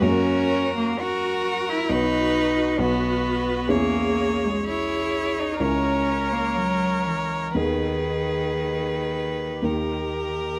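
Heard through close, detailed microphones in a large studio with moderate reverb, this 10.6-second passage from a slow romantic movement for piano quintet sounds intimate yet spacious. The mood is melancholic and elegiac, moving at a rubato 57 to 68 BPM in 4/4 in G# minor. A single violin carries the melody with a focused, vibrato-laden tone in a narrow upper range. Standing up front, the cello sings a rich, even second line beneath it, while the viola adds clear, smooth accompaniment. The concert grand piano, also up front, gives warm accompaniment with deep bass and short sustain, spanning from low in the bass up to the violin's register. The harmony passes through F#, B, E6, A#dim/C# and G#m/D# before arriving on D#.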